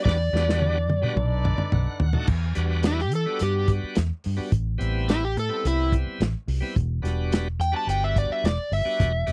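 An up-front, overdriven slide guitar carries the melody over a dark, round muted bass, a muffled soul drum kit and a bright tonewheel organ shouting through a slow rotary speaker in this smoky, brooding straight-eighth soul blues excerpt in E minor at 107 BPM, with a clear, vintage horn section holding sustained chords only until 2.1 seconds, all captured in a dry, close 1970s-style studio sound.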